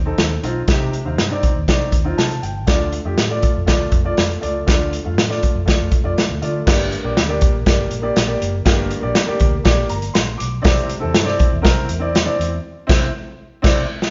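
Joyful and warm, this short cut from an uptempo 1960s-style soul number puts a woody, natural upright piano up front alongside a punchy vintage drum kit of crash, hi-hat, kick and medium-tuned snare, while a dark, round, foam-muted electric bass sits lower in the mix. The band sounds as if it is playing live together in one large, reverberant studio room with a rolled-off top end, and the harmony moves from Cmadd9 to Dm, then Gm and Cadd9. Near the close the band hits an accent from 12.6 seconds, capped by a drum fill at 13.6 seconds.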